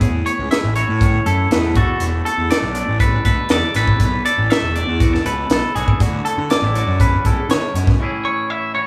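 A small room's light reverb frames this short live-band excerpt, a wistful, playful slice of math rock and midwest emo at 120 BPM in 4/4 with a straight feel in A major. A crisp fusion drum kit sits up front, its high-tuned snare and punchy kick carrying a saturated, gritty edge while the room pumps around it. Beneath, a fuzz picked electric bass adds overdriven growl from E1 to D3, and a clean, compressed twangy electric guitar picks out accompaniment with a bright, scooped tone. From 0.3 seconds a second twangy guitar spins high arpeggios between F#4 and E5, shimmering through phaser and digital delay. The harmony moves from Amaj9 to E7sus4 and Dmaj9, and by 8.0 seconds the bass and drums have dropped out for a brief break where the guitars ring on an Amaj7 until 8.9 seconds.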